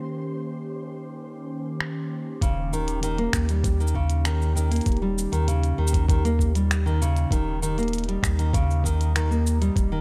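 Folktronica at 98 BPM in Eb mixolydian, hopeful and pastoral, where a warbling, nostalgic pad with chorus and phaser holds sustained chords on Eb7 under a faint flickering granular shimmer that ends at 2.4 s, as clicky cabasa, finger snaps and filtered hi-hat slip in from 1.8 s before a fingerpicked, full-bodied nylon-string guitar with tape echo and a round sine sub bass arrive up front at 2.4 s alongside a muffled, overdriven thumpy kick in this dry, close-sounding fragment of a longer piece.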